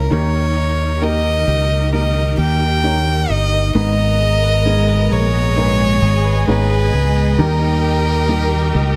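A single violin, rich and close with light vibrato and an airy, soft-attacked bow, carries a longing melody from the opening of this melancholic pop ballad in G# minor. Beneath it sits a slow 66 BPM groove: a round, up-front fingered electric bass, a soft felt-muted upright piano tucked intimately in the background, and a very quiet clean electric guitar playing compressed, picked arpeggios. A clear, focused string section holds sustained chords behind them as the harmony moves from D# to G#m around 3.7 seconds. At 3.8 seconds a lush violin section enters in the background with a smooth, even second line touched by tape echo, and the chords return to D# near 7.4 seconds. Light reverb gives the whole a small-room ambience in this short excerpt from a longer piece.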